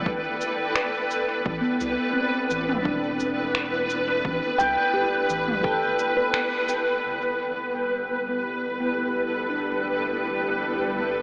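A lightly swung 86 BPM groove in 4/4 and G major drives this peaceful, spacious ambient dub excerpt. A punchy, overdriven electronic kick drops out at 5.8 s, and a tape-warm organic kit of cabasa, finger snaps and toms with dub echo plays on through a band accent before stopping by 6.8 s. Meanwhile a cloudy, detuned granular pad, a ringing stainless-steel handpan playing arpeggios through a low-pass filter and dub echo, and a round, deep analog bass sustain over G and Am7. At 7.0 s a bubbling, resonant stepped-filter texture joins in the background as a filter sweep colours the handpan, the mix set inside a huge, wet reverb with an AM radio sound.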